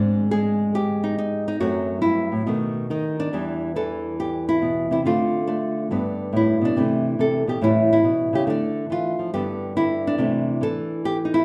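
A lone fingerpicked nylon-string guitar opens on an Abmaj7#11 chord and plays solo jazz in C major at 140 BPM with swung eighths. Its small, warm acoustic tone sits up front yet carries the wet bloom of a club room, moving through F#m7b5, B7 and Em7 before turning toward C69 at 6.8 s and again at 10.2 s. The mood is warm and sophisticated, and this brief excerpt from a longer piece is heard as if from further back in the room, with lossy compression artefacts.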